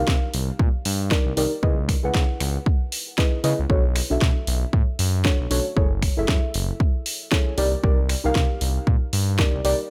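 Deep house at 116 BPM in 4/4 with a 59% swing on the sixteenths, this short cut from a longer piece carries a moody, late-night feel. Mellow chord stabs, soft and nasal with a filter sweep, fast attack and decaying tails, ride chorus, tape echo and sidechain pumping through a moody minor-seventh progression that moves from Cm7 to C#m7, Bm7 and F#m7 before returning to Cm7 at 7.6 seconds. Underneath, a smooth synth bass blending sawtooth and triangle tones sits up front with a fast attack and sustained notes, pumping with the sidechain. A punchy, overdriven electronic kick drives the groove prominently, joined by a layered house kit of finger snaps, bright hi-hats and a cracking snare that also carries overdrive. A digital ambience wraps the mix in a nocturnal space.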